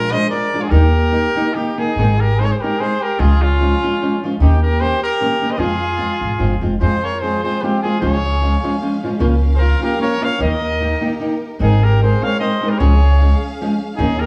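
Mexican folk mariachi in a swung, rubato 3/4 at 150 BPM, this proud, romantic fragment pairs a clear, distant trumpet melody up front with a mellow, vibrato-laden second trumpet, over dark fingerpicked flamenco guitar and a woody, thumpy pizzicato upright bass on gut strings, while a rich bowed chamber violin section enters in the background at 6.8 seconds with sustained chords, all set in a moderate recital hall reverb.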